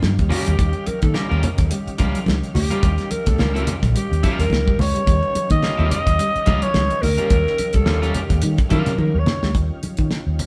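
Funk with a strutting, playful swagger, this short excerpt cut from a longer piece rides a gently swung sixteenth-note groove over a single Eb9 chord. A damped 70s drum kit sits up front with a fat snare, tight kick and hi-hat, joined by a dark, foam-muted fingered electric bass that sounds round and punchy, while very quiet congas with thick skins add close, dry hand percussion. In the background, a tonewheel organ holds smooth sustained chords through a fast rotary speaker with chorus vibrato, and a dark, clean, compressed electric guitar repeats a low riff. A second electric guitar, twangy and slightly broken-up, adds accompaniment bathed in spring reverb. Over it all, a growling alto saxophone takes the solo, breathy and raspy with vibrato and an analog delay, before a drum fill arrives at 9.0 seconds, and the whole band plays live together in a stone room with a moderate reverb.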